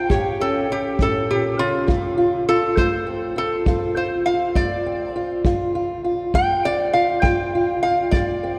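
A lap resonator guitar, metallic and nasal, carries the melody up front with fingerpicks and slide, taking a steel-bar solo from 1.9 seconds in this smoky, mournful acoustic country blues excerpt in D minor, set at a slow 67 BPM in 12/8. Beneath it, a fingerpicked old ladder-braced acoustic guitar with old strings gives woody, boxy accompaniment, moving from A7 to Dm7, while a dark, smooth kick drum played with brushes sits lower in the mix. A long cathedral reverb places the performance in a church or concert hall.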